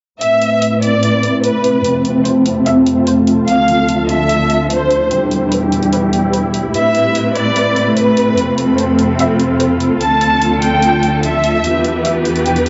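Heavy wobble dubstep in A minor at 147 BPM with a half-time feel and a menacing mood, this excerpt sets a dark violin section, bowed with vibrato and portamento and carrying the melody through dub echo, over a rich string section holding sustained chords behind a low-pass filter sweep, while overdriven electronic hi-hats sit low in the mix and a cloudy, detuned granular pad drifts in at 1.6 seconds, all within a lush hall reverb and a dark production cycling through Amadd9, F, Dm and Em.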